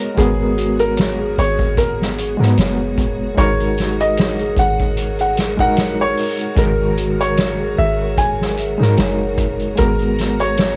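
Melancholic and hypnotic, this short trip hop excerpt at 75 BPM in G# minor sets a muted, intimate felt piano melody with dub echo over a reedy, lightly overdriven electric piano with tremolo and sampler grit, bell-like celesta arpeggios, a distant, roomy soft-mallet drum kit with a punchy kick, a deep round 808-style bass entering at 0.2 seconds, smooth bowed strings in the background and a brief dry tambourine at 10.6 seconds, with cassette tape coloring the pianos, celesta, drums and strings, moving from G#m9 to D#m/G# and back.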